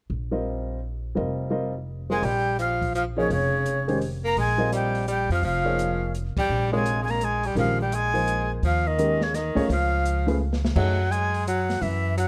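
An airy, reedy flute with vibrato and a crisp chiff carries the melody from 2.1 s, while a punchy, forceful tenor saxophone plays a second line beneath it in this cool, spiritual modal jazz excerpt in Bb dorian, swinging in 3/4 at 169 BPM. A woody, thumpy pizzicato upright bass and a natural-sounding baby grand piano start things off, and an open acoustic drum kit with a boomy kick and smooth, rolled-off top joins them. The band hits an accent at 6.3 s and the drums fill just before the harmony shifts to F#m9 at 10.8 s, all under light reverb in a dark, warm production.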